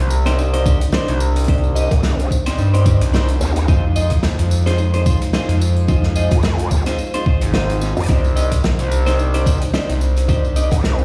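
This glitch hop excerpt in C minor opens with a dark, detuned analog pad holding sustained chords in the background, under a saturated, wave-folded synth bass that sits up front, as a distant soul drum kit of hi-hat, snare and tambourine and twangy twelve-string electric guitar stabs with sidechain pumping and dub echo arrive at 0.1 and 0.3 seconds. A compressed, pitched-down electronic kick thumps up front from 0.7 seconds, and a nasal vowel-sweep wobble bass with a formant filter joins at 1.9 seconds, all at 109 BPM with a swung sixteenth feel. The mood is gritty and playful, moving from Cmadd9 to Fm7 and back, with roomy studio reverb around the mix.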